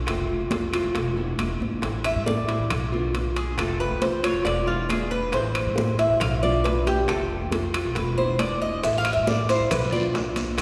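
A straight 4/4 groove at 137 BPM rolls along in this sultry A minor excerpt of Cuban son and guajira, with high-tuned congas in the background, very quiet tight bongos played with soft hands, ringing metal-shell timbales, and faint, band-limited vintage claves. A thumpy gut-string upright bass sits up front with fingerpicked bright nylon-string guitar accompaniment, complete with finger squeak, cycling through Fmaj7, E7, Am7 and Bm7b5. The Cuban tres takes the spotlight from 2.0 seconds with picked, metallic double-string arpeggios, raspy guiro and grainy, mellow maracas slip in at 8.8 seconds, and a wet church reverb gives the whole a spacious glow.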